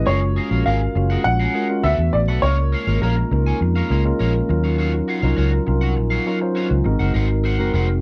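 Breezy and urban, this short pop excerpt moves at 102 BPM in straight 4/4, drifting through chords from Gbmaj9 to Ebm9 and Ab9. An intimate baby grand carries the melody for the first 4.2 seconds, its short sustain and audible action noise placing it close to the ear. Beneath it, a mellow tine electric piano plays the accompaniment through its built-in speakers, bathed in a lush chorus, and adds a brief fill at 7.7 seconds. A dark, round, foam-muted fingered bass sits up front and anchors the low end, while a twangy, slightly broken-up electric guitar picks a quiet riff coloured by analog chorus. The whole recording is dry and close, with the warm feel of a 1970s studio session.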